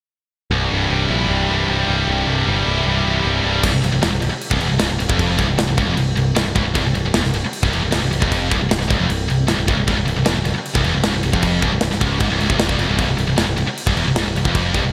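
Set in a lush hall reverb with a glossy 1980s-style digital sheen, this heavy metal excerpt feels epic and crushing in a straight 4/4. Two picked, high-gain electric guitars carry the riff from 0.5 seconds: one sits up front with biting distortion, reaching from deep in the low register up to E4, while a scooped, hollowed-out second guitar supports it further back. Underneath, a picked electric bass recorded direct adds a crisp, bright edge in the lowest register. At 3.6 seconds a tight metal drum kit enters up front, its acoustic studio-room sound built on a tight kick, a medium-tuned snare and crash cymbals. The drums mark the shift into the fuller second section, which drives on with guitars and bass until the cut at 14.9 seconds.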